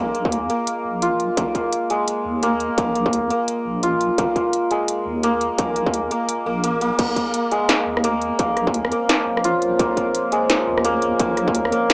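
A swung, half-time drum and bass groove drives this cinematic, spacious fragment, cut from a longer piece and resting on a single minor chord. A bright, shimmering santur plays ringing hammered arpeggios up front, colored by cassette tape and an analog delay. An industrial drum kit with a clanging snare, smooth hi-hats, rim clicks and crash cymbal sits forward, joined by a distorted electronic kick, both re-recorded in a small room and run through tape. A deep, wobbling bass with chorus and tube saturation holds the low end at a soft level, and at 8.4 s a moody ambient pad enters with slow-attack sustained chords, chorus, its own reverb and sidechain pumping. The recording carries a home-cassette, small-speaker character within a modest room reverb.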